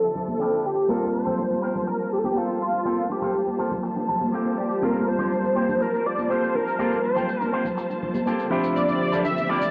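Nu-disco at 122 BPM in G dorian, groovy and cosmic, this short cut from a longer piece sets a thick, detuned unison lead up front with ensemble chorus, cassette tape color and analog delay over a clean tine electric piano, a lush, bowed string section in the background, a twangy envelope-filtered electric guitar riff with sampler grit and a clean fill at 3.8 seconds, distant bongos and congas, and a faint overdriven shaker under a filter sweep. It all moves from Dm11 to Gm11 and back to Dm11 in a home cassette sound with moderate spring reverb.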